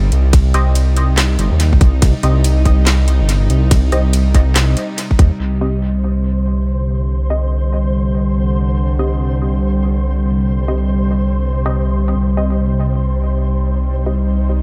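A swung, half-time deep dubstep groove with a heavy, brooding mood opens on a drop, where a tight, up-front electronic kick and a garage kit of woody snare, metallic hats, handclaps, ride and crash, low-pass filtered and tape-echoed, drive over a rumbling detuned saw bass, muted phased chord stabs and a tense, string-like bowed drone, until the drums drop out by 5.5 seconds and the drone's filter sweeps while a flickering, grainy granular texture enters at 5.8 seconds in this echo-heavy, dry-roomed cut from a longer piece.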